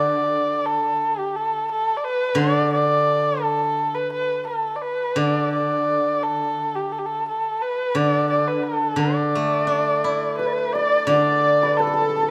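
A dark, woody erhu carries the melody up front with vibrato and portamento over a silvery, fingerpicked steel-string zither in this pastoral yet festive Chinese chamber excerpt, and at 10.4 seconds a bright, reedy large dizi with a buzzing membrane and a shimmering hammered dulcimer in the background join as second lines, all set in a moderate recital hall reverb with a rubato feel.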